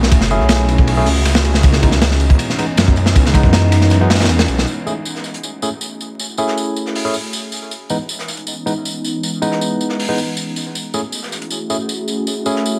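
Drum and bass with a jungle edge at 158 BPM in F# dorian, this atmospheric, raw excerpt opens on a drop where a gritty, saturated breakbeat kit and a thick, menacing detuned saw bass hit up front until 4.7 s, then a filtered, smaller-room breakbeat with hi-hat, snare and tambourine carries on beneath a warbling, nostalgic tape-like pad under a filter sweep and barky tine electric piano stabs with dub echo, all over F#m9 and C#m9 chords, vinyl crackle and light reverb.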